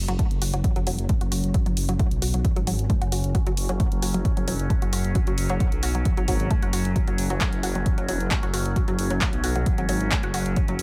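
Driving and intense, this excerpt of peak-time techno runs at 133 BPM in F# minor, built on a punchy, dry electronic kick and an analog drum machine supplying handclaps and hi-hat. A deep, rumbling detuned saw bass sits up front with tube saturation and sidechain pumping, while a lush unison pluck riff is coloured by overdrive, flanger and digital delay, and a filter sweep runs across a synth arpeggio sound throughout. A resonant drone with moving overtones enters at 0.4 seconds, softened by chorus and built-in reverb, in an otherwise close, dry mix.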